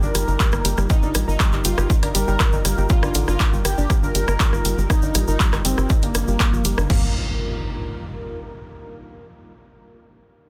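This melodic techno excerpt opens mid-drop at 120 BPM in G minor, with a tight, punchy sequencer bass sitting up front beneath a soft, airy supersaw melody carried on tape echo and a warbling, lo-fi pluck tracing arpeggios through chorus and dub echo. Behind them, a deep, moody ambient pad holds sustained chords over an Ebsus2/G harmony, its slow attack and long release bathed in chorus and reverb, while a grainy tube shaker adds bright acoustic texture in the background. At 0.1 seconds an overdriven techno kit of crash, handclaps, hi-hat and rim click comes in, joined at 0.4 seconds by a layered electronic kick that lands up front with a small-room sheen, and sidechain pumping makes the bass, pad and pluck breathe against the beat. The detuned, dusty arpeggios and the smooth, mellow lead give the drive a melancholic, dramatic cast. At 6.9 seconds the harmony shifts to Gmadd9 as an electronic impact hits, closing the cut on a dense, heavily limited modern master.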